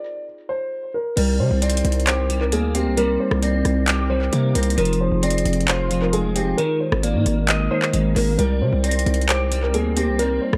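A lightly reverberant, echo-heavy mix frames this brooding, melancholic trap excerpt in C minor at 133 BPM with a half-time feel, where a dark, boxy concert grand piano with audible action noise carries the melody through tape echo alone for the first 1.2 seconds before a clean, picked electric guitar with ensemble chorus, a punchy, up-front 808 bass and a trap kit of metallic hi-hats, handclaps, rim clicks and crash join, followed moments later by a glassy, ethereal glass harmonica holding sustained chords in the background, all over Cm7, Fm7 and Absus2.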